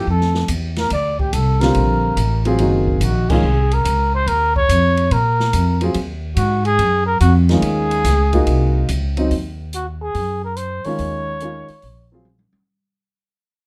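A breathy, whispered trumpet carries the melody in this searching, spiritual modal jazz piece, its soft-attack notes scooped and shaded with vibrato in an intimate solo voice. Beneath it, an upright piano with audible action noise supplies woody, natural accompaniment, while a pizzicato upright bass on gut strings sits up front with a thumpy tone. An acoustic drum kit in a small room adds dark cymbals, a medium-tuned snare, a boomy kick and toms to the swung 4/4 groove, with harmony moving from Gm9 to Ebm9. The band hits a shared accent at 3.2 seconds, and the music begins fading out at 9.3 seconds, with a drum fill arriving at 12.2 seconds as this cut from a longer piece closes. Light reverb and a dark, warm production tie the whole together.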